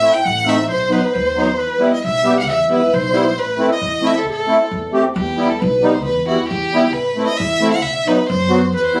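A bittersweet, soulful klezmer fragment in a straight two-beat metre opens with all four players together: a rich, focused bowed violin carrying the melody with vibrato, a classical-style clarinet tracing a second line, a reedy musette accordion in musette tuning, and a pizzicato upright bass. The accordion sits close and dry, up front with a full, shimmering sound, while the single violin shares the foreground. Beneath them the bass, with steel strings, gives a woody, thumpy acoustic pulse at a lower level. The clarinet's warm voice drops out at 4.9 seconds and returns at 8.7 seconds, over the closing B5 chord. The short passage repeats its opening section over minor-leaning harmony, and it sounds captured on a phone in the room, with a moderate club-like reverb around the ensemble.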